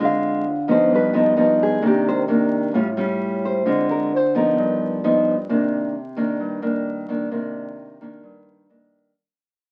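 A fingerpicked nylon-string guitar sits up front in this wistful, smooth bossa nova fragment, cut from a longer piece, laying down the accompaniment from G2 to F4 with the fresh-string sound and small body of a close acoustic instrument, finger squeaks audible along the neck. Above it, a second nylon-string guitar carries the melody in a classical fingerpicked style, its warm tone sitting slightly lower in the mix and ranging from D4 to F5. The two guitars open together as a guitar solo passage, and the melody drops out at 5.0 seconds while the accompaniment carries on through a fade-out that begins at 5.5 seconds. The harmony moves through a minor-key cycle of Dm7b5, G7b13, Cm9 and Aaug7, returning to Dm7b5 and a G7alt before landing on Cm9. The whole recording carries the crackle of a very old 78 rpm record, set in a wet club ambience with a short reverb tail.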